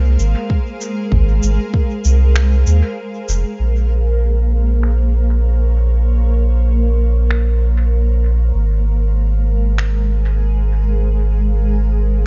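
A lightly swung sixteenth-note pulse in four sets the gait of this meditative, spacious ambient dub fragment, carried by a faint electronic shaker and finger snaps that sit low in the mix behind a low-pass filter and a trailing dub echo. A deep, tape-warm electronic kick, layered and up front, thumps only at the very start and is gone by 1.9 seconds, while from 3.6 seconds a filter sweep moves across the drums. Underneath, a soft, round dub sub bass with a fast attack holds sustained low notes up front throughout. A cloudy, full-bodied granular pad with a slow attack and long release drifts in blurred, evolving chords bathed in its own reverb, moving from Ab6 to Bbmadd9 at 3.6 seconds and back to Ab6 at 8.5 seconds. The mix is dry in room sound but heavy on echo, with a dark top end that keeps the whole piece hazy and submerged.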